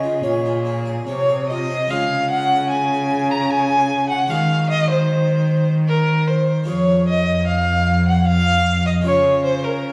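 Heard from further back in a wet recital hall with a 1.6-second reverb, this flowing, introspective baroque-style sonata movement in Db major moves at 75 BPM in 3/4 with a rubato feel, cut from a longer piece. A warm, expressive violin carries the melody up front with vibrato and portamento, while a mellow baroque flute with a pure, wooden straight tone and soft attack sings a close-miked second line. A full French-style harpsichord plucks the accompaniment on two sets of strings, and a rich, bowed cello with vibrato and portamento anchors the continuo bass as the harmony moves from Db through Ab7/Eb at 4.3 seconds and settles back on Db at 9.1 seconds.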